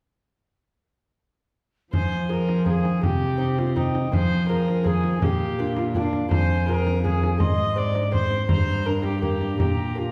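The rich, reedy cello sits up front in this rustic, solemn renaissance-style consort dance, its period-style gut-string tone carrying a light vibrato through a bass line from F2 to F3. The piece is a fragment cut from a longer work, in F dorian with a straight 3/4 feel at 165 BPM. Its five parts enter together at 1.9 s over chords that move from Fm through Cm, Bb, Ab and Gm. A single close viola with a nasal, airy bow carries the second line, while a delicate fingerpicked lute on doubled nylon strings, some tuned in octaves, fills in the accompaniment. Further back, the alto recorder plays the melody with a woody, airy voice, a crisp chiff and vibrato. A frame drum played with soft hands sounds close until 9.8 s, and the consort is heard from deeper in a wet recital hall with a 1.5-second reverb.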